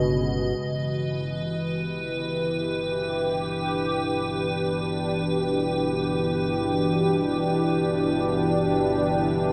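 Drenched in a huge, wet reverb, this dark ambient drone excerpt moves in free time with an unsettling, shadowy mood, shifting from Bsus2 to Em7. An up-front, resonant sawtooth pad sweeps through sustained, detuned chords over an evolving, wave-folded analog drone that fades in from 0.6 seconds, while an icy, crystalline glass pad adds an airy, ring-modulated texture. For the first 2.2 seconds, a ringing bronze metallophone struck with a wooden mallet plays delayed arpeggios in the background.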